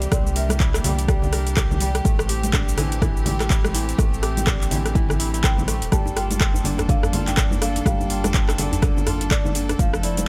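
The kora plays crisp, ringing fingerpicked arpeggios that pump with the sidechain and trail a delay, over rich bowed chamber strings holding sustained chords with light vibrato and a deep, round sine sub bass, all moving through C7, Am7 and Gmadd9 in G dorian. This earthy, driving afro house excerpt runs at 124 BPM with a 16th-note swing, built on a deep electronic kick, an overdriven deep house kit with metallic hats, handclaps, rim click and shaker, and bright, thin-skinned congas in the background, joined at 6.1 s by a close, dry djembe. A woody, mellow marimba melody played with soft mallets sits back in the mix with delay, appearing briefly at the start and returning at 5.4 s, all within a small room ambience.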